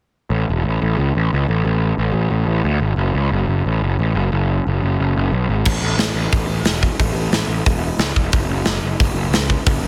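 A driving, straight 4/4 pulse at 179 BPM powers this energetic, upbeat punk rock excerpt in A major, opening with a growly, overdriven fuzz bass picked up front between E1 and D2 before a big, punchy acoustic rock kit of kick, snare, hi-hat and crash cymbal joins at 5.7 seconds, all in a dense, heavily limited, dry modern mix.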